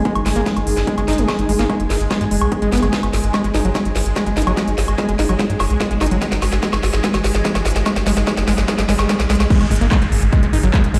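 Psychedelic trance with an alien, driving mood, where a dark, punchy sequencer bass drives alongside a squelchy, gritty acid riff that pumps under a heavy overdriven kick and a cracking-snare techno kit of claps, hats, woodblock and crash, while a swarming, warbling drone and a blurred granular cloud pad hover in the background of a lush hall, a very quiet riser and downlifter enter at 6.0 seconds, and the build-up with its drum fill breaks into the drop at 9.5 seconds.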